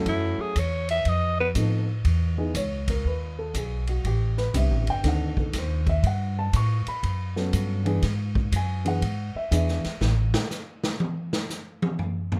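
This short cut from a longer small-group swing and bop piece opens with a dark, intimate baby grand piano in accompaniment over a woody, up-front pizzicato upright bass, as a drum kit heard distant and roomy in a studio space joins straight away. A growling alto saxophone, raspy and gritty with vibrato, scooped notes and a soft attack, plays a brief up-front melody that ends by 1.5 seconds. The mood is sophisticated and playful, with a swung 4/4 feel moving through jazz chords such as F7#11, Emaj7, Am11 and Gmaj9#11. The mellow piano carries audible action noise and a short sustain, while the steel-string bass keeps its low line close. Once the piano has dropped out, the kit solos from 10.0 seconds, and after the bass falls away shortly afterwards, its boomy kick, medium-tuned snare, toms, hi-hat and ride are heard alone in an otherwise dry mix.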